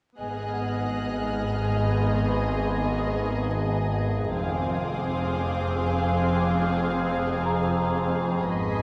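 Ominous and uneasy, this cinematic fragment in 3/4 rests on muted, con sordino strings: violins carry a veiled melody over a second violin line, with violas in accompaniment and a background cello section and lush double basses filling the low end, while a very quiet, bell-like celesta and a high, smooth-topped violin texture glint above. From 0.8 seconds a resonant drone with moving overtones, chorus and its own reverb joins the low register as the harmony shifts from G#m to Fm at 4.3 seconds. A moderate concert hall reverb surrounds the ensemble, and a layer of vinyl crackle adds a worn surface.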